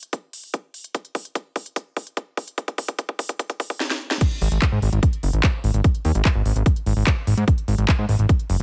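A digital ambience, thinned by a high-pass filter, frames this intense, driving psychedelic trance excerpt in a straight 4/4. A layered electronic kick drum sits up front with a heavy punch, shaped by its own high-pass filter and a small room ambience. The techno drum kit sits lower in the mix and brings a cracking snare, smooth hi-hats, handclaps and crash cymbal, with drum fills running through the opening build-up. The drop lands at 4.2 seconds, and at 4.4 seconds a fat analog bass joins up front, moving between F#1 and G#2. Its thick, detuned sawtooth tone has a fast attack, sustained notes and a filter sweep, giving the drop real weight.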